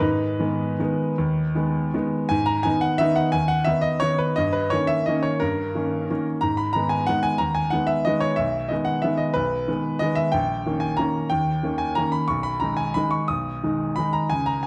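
A dark, intimate recital-hall sound with a wet 1.4-second reverb frames this elegant, wistful classical piano waltz in 3/4, where a clear, up-front baby grand plays solo with rubato across a span from A#1 to D#6, its audible action noise lending a natural closeness through a brief passage of G# minor harmony colored by D#7 chords, cut from a longer piece at 14.7 seconds.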